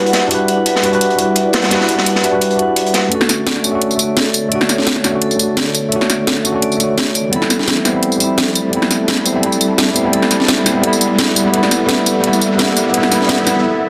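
A rolling liquid drum and bass groove in straight 4/4 drives this soulful fragment of a longer piece, carried by an electronic, layered kit with a cracking snare, bright hats, tambourine and overdrive sitting up front. For the opening few seconds a gritty, saturated acoustic breakbeat kit with a medium-tuned snare and a rolled-off top joins it, filtered to thin its hats, snare and room, before dropping out at 3.0 seconds. Over the beat, a worn, slightly out-of-tune tine electric piano comps up front, lightly overdriven through its built-in speakers and trailed by dub echo. A metallic, ringing vibraphone struck with hard mallets spins arpeggios through digital delay with a medium motor vibrato and a boxy small-room character, while a smooth, dark, detuned sawtooth pad holds soft-attack chords under chorus in the background. Filter sweeps move across the vibraphone first, then across the piano and pad as a build-up takes hold, an electronic riser climbs in the background from 6.5 seconds, and everything gathers in a moderate plate reverb before a break at 13.6 seconds, all within a dense, heavily limited modern master.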